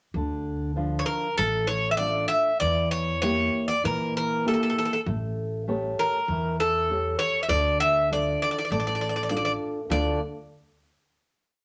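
A bright, metallic Greek bouzouki with double strings picks a modal, ornamented melody up front from 1.0 seconds in this cool and bittersweet Greek folk piece in D harmonic minor at 98 BPM, over a dark, thumb-plucked nylon-string guitar playing oompah bass notes and chord figures and a woody, thumpy pizzicato upright bass in a two-feel, moving through Dm, Edim and A7 back to Dm before a final chord in a moderate club reverb.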